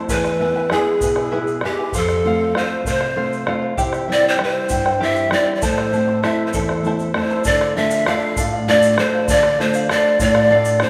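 Large cane pan pipes carry the melody up front in this short cut from a longer Andean folk piece, their breathy, reedy tone marked by a crisp chiff on each attack and a gentle vibrato. The mood is festive yet wistful, moving at a slow 65 beats per minute in a straight 6/8. Beneath the pipes, a fingerpicked charango with double strings adds a shimmering layer, while a fingerpicked nylon-string guitar supplies a full-bodied, deep classical low end. A dark, dry bombo and a grainy, close tube shaker keep the pulse, with the shaker sitting well back in the mix. The harmony moves through E, F, C and A minor before turning to D minor at 7.5 seconds, where the second section begins. A generous scoring-stage reverb gives the ensemble a spacious, wet setting.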